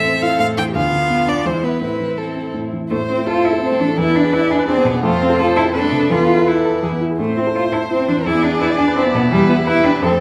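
Set in a large studio with moderate reverb, this urgent, dramatic excerpt from a quick classical-period piano quartet movement in triple time features a rich violin melody played with vibrato over a smooth, even bowed cello second line, while a clear viola sits in the background and an intimate baby grand piano, its action noise audible and its notes short in sustain, fills out the accompaniment up front.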